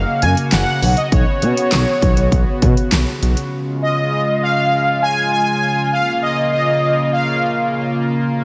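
A straight 4/4 groove at 100 BPM drives this bright, wistful synth-pop fragment in Db mixolydian. A gliding sawtooth bass and a punchy electronic kit with fat snare, bright hats and handclaps play up front until about 3.3 and 3.5 seconds, while a shimmering, detuned pulse-width pad holds sustained chords from Gb through Cbsus2, Db and Bbm. Above it all, a bold, brassy analog synth lead carries the melody between Db5 and Ab5, with vibrato, chorus and digital delay, inside a lush hall reverb that gives it a big arena sound.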